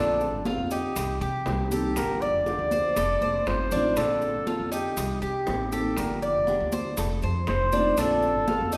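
A veiled, breathy trumpet with a bucket mute carries the melody up front in a jazz style, with light vibrato, over a relaxed Cuban son and guajira groove at 120 BPM in Bb major. A metallic, double-strung Cuban tres picks arpeggios, a small thumb-plucked nylon-string guitar adds warm accompaniment, and a woody, dark upright bass with gut strings gives a thumpy pizzicato foundation through a repeating Bbadd9, Cm7, Gm7, F7 progression. From 0.2 seconds, grainy maracas join ringing high-tuned congas and tight vintage-sounding bongos, the drums sitting in the background, with a drum fill from 3.0 to 4.0 seconds, all in the lush reverb of a recital hall.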